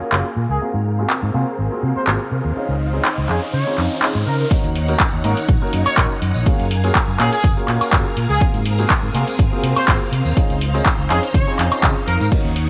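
A filter sweep opens this groovy, funky slice of filtered disco house at 123 BPM. A grand piano with audible action noise and 12-bit sampler grit, lush sawtooth string-machine chords, a round, amped fingered bass and a background tambourine pump under sidechain, while a tight, clear trumpet section with light vibrato and tape echo carries the melody over a punchy analog drum machine of handclaps, hi-hat, ride and woodblock. An electronic riser builds from 1.9 seconds into the drop at 4.5 seconds, where an up-front, tape-warm kick arrives as the chords cycle through Ebm7, Gbmaj9, Ab13 and Dbmaj9, all framed by a cassette home-recording sound and light digital reverb.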